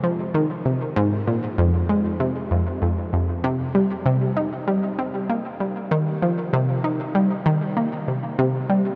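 Hypnotic and expansive, this short ambient excerpt moves at 97 BPM in a straight 4/4, opening in F minor before shifting to C minor at 3.4 s. A lone analog pluck carries the whole passage from 0.0 to 8.8 s, ranging from F2 to Eb4. Its round, detuned sawtooth tone has a fast attack and a decaying filter pluck, and it sits bright and up front with chorus and tape echo on it. A huge, wet reverb with a 7.8-second tail surrounds the pluck, giving the piece a vast sense of space. The production is dark and warm overall, and the clip is cut from a longer piece.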